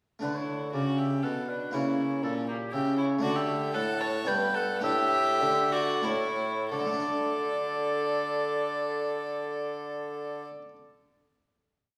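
Radiant and flowing, this short baroque-style sonata movement for violin, oboe, bassoon and harpsichord continuo unfolds in D major in a straight 3/4, moving between 87 and 122 BPM and slowing from 2.5 to 6.7 seconds before settling onto a final D chord. The warm, soft-attacked oboe carries the melody in a classical style, while the violin, bowed by a single player with a rich, gut-string, slightly reedy period tone heard up close, doubles the tune in sixths and thirds. Beneath them, the bassoon supplies a walking and sustained bass with light vibrato and a vintage character. The harpsichord, plucked and full with two sets of strings in an Italian style, sits up front with rolled chords and rings on briefly after the others stop at 10.5 seconds. The harmony passes through an A#dim7, G and A before resolving, and the whole ensemble blooms in the wet reverb of a recital hall or church.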